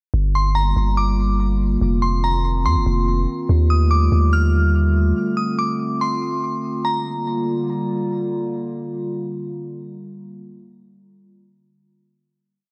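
Ethereal and spacious, this short atmospheric cloud-rap piece drifts at 143 BPM in a half-time 4/4 feel, set in G minor. A warbly tape-like pad holds sustained chords through nearly the whole piece, its dark, nostalgic lo-fi tone thickened by chorus and its own reverb, moving from Gm7 through F7sus4, Ebmaj9#11 and Dm7 before returning to Gm7. Beneath it, a deep 808-style bass sits up front with long, mellow sine sub-bass notes and pitch slides, dropping out at 5.1 seconds. High above, a glassy, crystalline FM synth bell repeats a sparse looping melody like a sampled loop, softened by a low-pass filter and trailed by chorus and delay until 8.1 seconds. The sound is lightly reverberant and worn, with the warble and pitch drift of old cassette tape, and the pad sustains the final chord from 6.8 seconds to the close, joined by the bell until it fades at 8.1 seconds.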